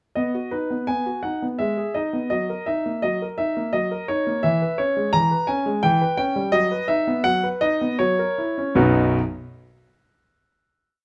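A smooth, vintage-toned grand piano sits up front in this short, cheerful and graceful classical-period sonatina in 3/4, its single-line melody floating over a broken-chord bass with rubato and uneven beats, captured by close, detailed microphones in light reverb before settling onto a final chord at 8.8 seconds.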